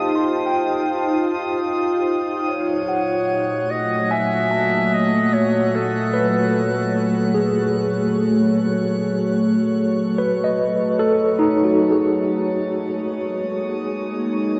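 Serene and melancholic, this ambient piece in 3/4 sets sustained chords from an ethereal FM pad under barky, overdriven tine electric piano arpeggios with fast tremolo, while a faint sine-based harmonics texture drifts high above, a nasal, evolving analog drone enters at 3.2 seconds, and a distant, roomy clarinet carries a classical-style solo melody from 2.5 to 7.0 seconds, the whole bathed in a huge, wet reverb and a dark, warm production.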